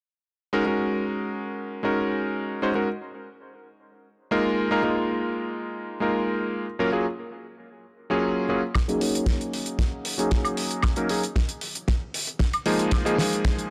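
Opening on a clear, vintage electric grand piano with a clangy low end, this groovy, sunny nu-disco excerpt at 115 BPM moves through Ab9sus4, Bb7sus4 and Gbmaj9 chords under low-pass filtering and analog delay, until at 8.7 seconds a damped 70s kit with a fat snare, hi-hat and woodblock enters, followed at 8.8 seconds by a dry, tight kick, for a build-up with a drum fill and a filter sweep on the piano, all within a gritty hardware recording touched by light small-room reverb.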